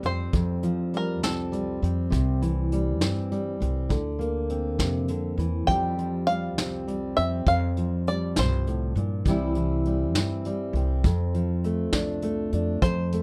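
Gentle and nostalgic, this short passage from a longer acoustic folk piece moves at an unhurried 67 BPM in a steady, straight 6/8. A fingerpicked dreadnought steel-string guitar sits up front throughout, dark and full-bodied, with a touch of finger squeak, over chords that drift from Fadd9 through C and Bbadd9/D to Fsus2 and a closing F6. The upright bass is plucked with a woody, growly tone, while a vintage brush kit of hi-hat, punchy kick and medium-tuned snare sounds natural and rolled-off in a small room. The twangy, percussive five-string banjo carries the solo, played with fingerpicks; it sounds in bursts, first from 0.0 to 1.9 seconds, then again at 5.7 seconds, with a final flicker at 12.8 seconds. Light reverb gives the close, intimate small-band sound a soft sense of space.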